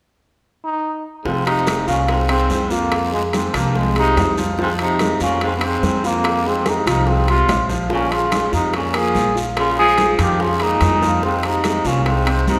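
Bathed in a wet concert-hall reverb, this fiery, driving Afro-Cuban jazz excerpt in F minor at 144 BPM opens with a buzzy, breathy, up-front metal-muted trombone carrying the melody at 0.6 seconds, joined at 1.2 seconds by a clear baritone saxophone with vibrato on a second line, then from 1.3 seconds by a warm concert grand piano, a woody, thumpy pizzicato upright bass, thick-skinned congas in the background, very quiet high-tuned bongos and a raspy guiro, with ringing metal-shell timbales arriving just after, all moving over Fm7 and Bbm7 chords.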